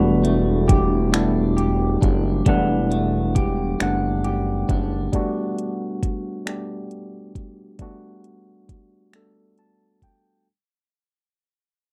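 A slow, straight 6/8 R&B groove at 45 BPM in E minor rides on an electronic drum kit with a knocking kick, metallic hi-hat and finger snaps, setting a sultry, late-night mood over a single Em11 chord as the passage fades out across its 10.5 seconds. A fat, detuned sawtooth bass with a filter sweep sits up front alongside a worn, slightly out-of-tune tine electric piano that carries the accompaniment and plays a fill from 9.1 seconds. A picked, slightly broken-up electric guitar with analog chorus adds a quieter second line until 5.7 seconds, all in a dry, close 1970s-style studio sound with light reverb.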